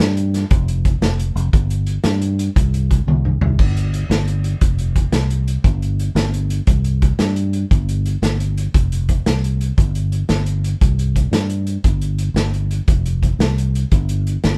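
A joyful, danceable highlife groove in a straight 12/8 feel, carried by a fingered electric bass with a round, up-front tone and a vintage acoustic drum kit whose punchy kick, medium-tuned snare, dark cymbals and rolled-off top sit in a small, pumping room. A drum fill at 3.1 seconds leads into a new section at 3.6 seconds, where bass and drums continue together under light reverb, with the live band feel of players sharing one room. The piece is cut from a longer performance.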